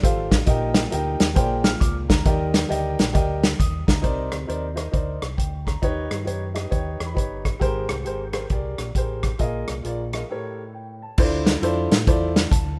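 Uptempo gospel in Eb major at 135 BPM, swung and jubilant, this short excerpt from a longer piece sets a mellow, boxy concert grand with long sustain up front against a round, punchy fingered electric bass and a natural country drum kit of crash, hi-hat, rim click, medium-tuned snare and punchy kick. The piano steps forward with a fill at 6.3 seconds, and the band takes a break at 10.3 seconds before the opening theme returns at 11.2 seconds. Soulful chords such as Ebmaj7, Cm9, Eb7alt and A7b9 color the harmony, heard through light small-room reverb in a rough home demo mix.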